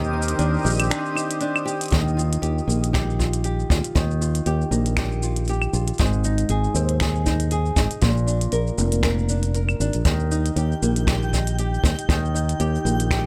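A reedy accordion holds sustained chords over a Cmadd9 harmony as this delicate folktronica excerpt opens, joined by fingerpicked nylon-string guitar arpeggios with old strings and a tape echo, a growly, up-front fingered electric bass, and a minimal electronic click kit of claves, finger snaps, clicky hi-hat and shaker. A twinkling granular texture with an octave-up shimmer and slow attack sits faintly in the background, and the opening bars give way to a short break. At 1.9 seconds the accordion and the texture drop out as a boomy, polished acoustic kick played with brushes arrives up front, and the harmony settles on Ebadd9 before moving through Ab and Bb back to Eb. The groove runs at 118 BPM in 4/4 with a gentle swing on the sixteenths, keeping the feel light and unhurried in Eb major. Near the close, at 10.6 seconds, the sparkling granular layer returns with its long release and built-in reverb, drifting above the woody guitar and punchy bass in a small, intimate room.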